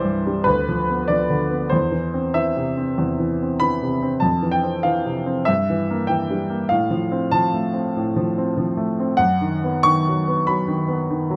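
Warm and passionate, this short excerpt from a longer romantic character piece for solo piano unfolds in 4/4 with a freely pushed and pulled rubato feel. The grand piano sounds clear, present and up front, spanning from deep bass to bright upper register over a harmony that passes through diminished and major chords before settling on B major. Close, detailed microphones and light reverb keep every note distinct while giving the instrument a gentle sense of space.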